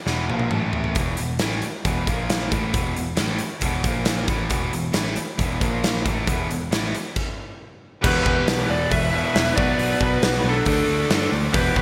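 Heavy and driving, this hard rock passage opens with a drum fill from a punchy, up-front kit bathed in gated reverb, while a crunchy guitar with subtle chorus, a tight distorted guitar and a growly picked bass push a riff that halts briefly at 7.2 seconds. At 8.0 seconds a dark lead guitar through a small cranked amp takes the melody with overdrive, chorus and digital delay, shadowed by a smooth second lead line tucked behind it and a very quiet, double-tracked third guitar riff. Lush hall reverb and bright 1980s-style digital production give the sound its gloss.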